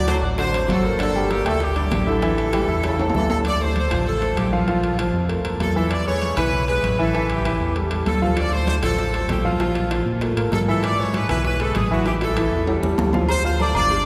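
A lush cathedral reverb surrounds this short salsa cut, recorded in a church or concert hall and taken from a longer piece, passionate and driving at 195 BPM in D minor. A brilliant, close-miked horn section carries the melody up front with light vibrato, while a clear, intimate grand piano accompanies with audible action noise and a polished presence. A deep, dark fingered electric bass sits punchy and round at the front, and a bright trombone section adds a background second line only until 3.3 seconds. Bright, thin-skinned congas and ringing metal-shell timbales with agogo bells drive the percussion, with very quiet, low-tuned bongos and cowbell dropping out after the opening and returning at 8.4 seconds. Drum fills mark the turns, and the harmony cycles from D7 and Gm through Dm7, Bb5, E and A5 before landing on Dm.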